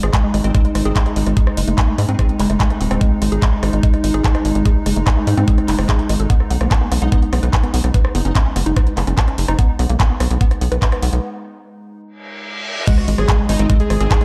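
A woody, wave-folded pluck riff with chorus, tape echo and a gritty 12-bit sampler edge drives this psychedelic, propulsive trance cut at 146 BPM, over a knocking, up-front kick, a tight sawtooth sequencer bass and a small-room drum kit of bright hats, handclaps, rim clicks and crash. A morphing, warbling wavetable pad sustains chords throughout, while a very quiet, metallic wobble bass surfaces in brief bursts and the dreamy mix sits in a lush hall reverb. After a break from 11.2 seconds, a reverse cymbal rises into a drop at 12.9 seconds, where a bold, detuned unison lead with phaser and delay arrives over an electronic impact.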